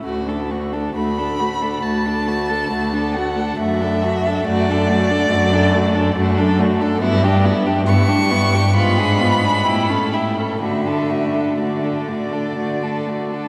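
Classical slow romantic string-quartet movement, serene and warm with free-flowing rubato, in which a dark, woody first violin with vibrato carries the melody from 0.9 s over a soft-attacked second violin line, an intimate, airy-bowed viola accompaniment with light vibrato, and a pure, nasal, up-front cello bass, all four bowed sul tasto and bathed in a long, wet cathedral reverb.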